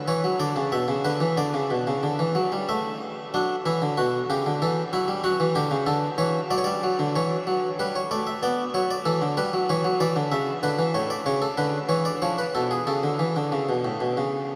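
A straight 3/4 pulse at 94 BPM carries this stately, elegant baroque-style two-part invention in D major, played by a solo harpsichord that spans A2 to E5 with a bright, airy, plucked Italian-style voice on one set of strings, sitting up front. Enormous reverb with a 7.5-second tail places it in a vast, echoing space. The opening idea gives way to a contrasting passage at 3.3 s and returns at 7.2 s, moving through colours such as Bm, Em7 and C#7/E# before settling on Aadd9 in this cut from a longer piece.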